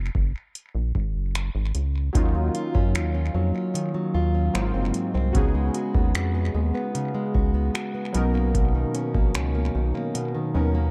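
A straight, unhurried 4/4 groove opens this contemporary R&B passage, cut from a longer piece, with a booming analog drum machine laying down a deep kick, metallic hi-hats and finger snaps, its overdriven sound re-recorded in a small room and set up front. A rubbery square-wave bass starts things at the very beginning, hollow, bouncy and dark, with a resonant filter pluck and sustained low notes. At 2.1 seconds, fingerpicked arpeggios arrive on a plugged-in steel-string parlour guitar, boxy and close, alongside round, full-bodied analog keys built from detuned sawtooth tones with a filter sweep and chorus. Tape echo trails both the guitar and the keys, giving the dry, reverb-light mix its echo-heavy character, while the harmony moves through lush extended chords from Ebm9 and Ab13 to a closing Bmaj9. The mood is longing and sensual.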